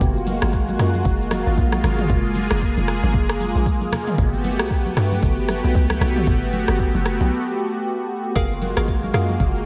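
Soulful and dreamy, this short amapiano cut from a longer piece moves at 115 BPM in 4/4 with a 58% swing on the sixteenths, set in F# major. A smooth, detuned sawtooth pad sits up front holding sustained chords with a slow attack and long release, its chorus and sidechain pumping giving the F#maj9 to Gmaj9 harmony a gently breathing quality. Beneath it, a hollow log drum bass supplies bouncy, percussive FM tones with a fast attack and decaying tail. A layered electronic deep house kit with a deep kick, hi-hat, rim click, shaker and toms sits forward in the mix, while acoustic congas with a thick skin and soft hands sit in the background. After a break from 7.3 to 8.4 seconds, a bright, wave-folded square pluck enters at 8.4 seconds with short, chorused stabs trailed by tape echo, all bathed in a lush hall reverb that soaks the mix.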